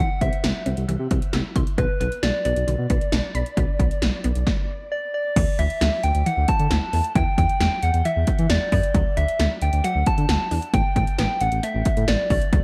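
A round, gentle, keys-like synth lead carries the melody from the first moment, coloured by chorus, shimmer reverb and dub echo, while a juicy, squelchy blip pluck plays resonant arpeggios in the background through phaser and the same shimmer and echo. This is bright, upbeat synth-pop in D major at 134 BPM in a straight 4/4, and it is cut from a longer piece. Almost at once a smooth, dark synth bass with sawtooth edge, ring modulation and vibrato joins up front, alongside electronic 80s pad drums with a punchy kick, gated snare, metallic hats and crash cymbal. After a brief stop from 4.5 to 5.4 seconds, the music moves into a new section where the chords shift from C and Bm to Dsus2, Em, Dadd9 and A5. The mix is echo-heavy, set in light reverb and digital ambience, with the lead, bass and drums sitting forward and the bright, detuned pluck behind them.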